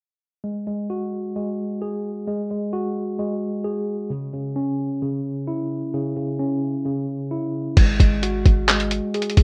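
Hip hop trap at 131 BPM in a half-time feel opens on a mellow tine electric piano playing up-front, low-pass-filtered arpeggios with delay over F#sus2/G# and C#m, before a muffled, pitched-down, tape-warm sampler-style kit with a thumpy kick, hi-hat, handclaps and crash enters together with a very quiet, deep, boomy 808-style sine bass at 7.8 s on a G#5 chord, giving this melancholic yet hard-hitting cut from a longer piece a rough home-demo sound in a small room.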